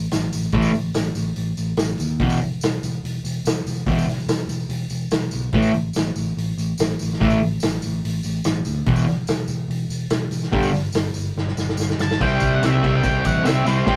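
A straight 4/4 pulse drives this raw, swaggering garage rock passage, cut from a longer piece. A vintage acoustic drum kit sits up front with a punchy kick, a medium-tuned snare, and crash, hi-hat and ride cymbals softened by a rolled-off top. A jingly, band-limited tambourine adds a bright edge low in the mix, while a picked electric bass supplies an amped, warm low end. At 0.5 s a double-tracked fuzz guitar comes in up front, playing a distorted riff over A5, E5 and G5 chords. A drum fill at 11.4 s leads into a move to C at 12.2 s, and just before it, at 12.0 s, a dark octave-fuzz lead guitar enters with a high melody. The whole take has a rough rehearsal-room sound, with tube saturation and a short, moderate booth ambience.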